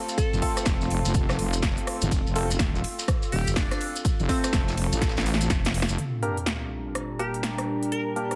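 A heavy, saturated wobble bass and a punchy electronic kick drive this gritty, swaggering bass house excerpt at 124 BPM with a swung 16th feel, alongside crisp hats and snare from a big-room dance kit, a faint acoustic rock kit, grainy maracas, hollow chorused organ stabs, a crystalline wavetable pluck melody and a warbling lo-fi pad, before a drum fill from 5.0 s leads at 6.0 s into a move from F to G minor, where a resonant phaser-swept pad and an electronic sub drop arrive under a heavily compressed, radio-like sheen.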